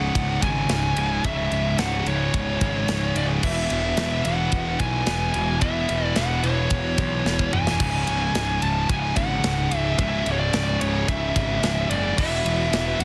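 A growly, fuzz-laden picked bass sits up front in this dark, aggressive heavy metal excerpt, overdriven and bright as it churns through the low register at 110 BPM in a straight 4/4, in C# minor. Above it, a dark, high-gain lead guitar carries the melody in a high register, while three rhythm guitars play the riff: a heavy high-gain part and a scooped one sit in the background, and a very quiet, double-tracked fuzz guitar adds a soft, warm haze alongside them. A tight metal drum kit enters at 0.2 s, with a mid-forward studio-room sound, a medium-tuned snare, a softly clipped kick, a rolled-off top, and crash, ride and toms; it plays a short fill at 7.3 s. The harmony moves from C#5 to E, then C#m, and settles on E5. Dry and dense, the heavily limited modern master keeps the whole band pressed close and punishing.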